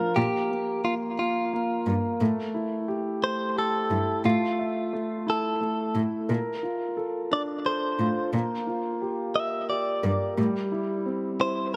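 A swaying, tender pop ballad in a gentle six-eight lilt, this short passage sets a clean, picked electric guitar, recorded direct and compressed, carrying the melody up front, while an intimate concert grand piano with deep bass, long sustain and audible action noise supplies the accompaniment. Both guitar and piano carry an analog delay, and a bowed solo cello, nasal and boxy with vibrato, holds the low line from 0.2 seconds until it drops out at 10.5 seconds. Light studio reverb gives the echo-heavy mix a soft glow as the chords drift from Gm7/Bb through Fmaj7/A and Bbmaj7 to a rootless Am7.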